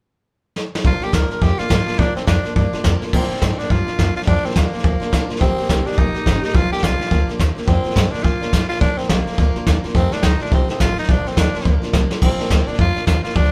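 A brisk swung 4/4 at 211 BPM drives this retro, rollicking rockabilly clip in Bb major. The jazz brush drum kit opens with a fill at 0.6 seconds and sits up front, its boomy kick, medium-tuned snare, hi-hat and dark crash cymbal sounding roomy and slightly distant with a rolled-off top. Underneath, a woody, thumpy upright bass plucks gut strings in the background, while a parlour-style steel-string acoustic guitar with fresh strings adds bright picked accompaniment, also tucked back in the mix. Entering at 0.9 seconds, a growling tenor saxophone carries the solo melody with a raspy, gritty tone, soft attack and light vibrato. The band plays live together in one room with light reverb, moving through Bb, Eb and F7 before a second drum fill at 12.1 seconds ushers in a fresh pass of the tune.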